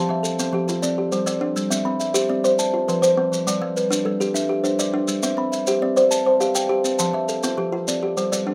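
Rippling and warm, this southern African traditional mbira-style cycle moves at 136 BPM in a straight 12/8 in G mixolydian, with two up-front kalimbas weaving arpeggios over F, G5 and C chords, one a short, hollow-box, band-limited pluck with a vintage tint and the other a dark, smooth, ringing solid-board tone, while grainy, mellow maracas join at 0.2 s, all captured dry in the open air.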